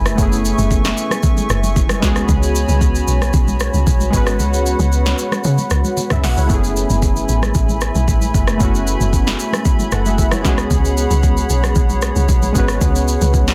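Amapiano at 114 BPM in F# minor, this hypnotic, deep excerpt rides a round, percussive log drum bass and an up-front deep house kit with a punchy, softly clipped snare, while very quiet, thin-skinned congas sit low in the mix. Detuned analog keys with a sawtooth bite and a filter sweep trade between F#m11 and C#7sus4 chords over a hollow, flute-like pad with a slow attack and long release, both thickened by chorus. The kick drops out between 4.4 and 6.5 seconds before returning, all within a dense, heavily limited master and a digital ambience.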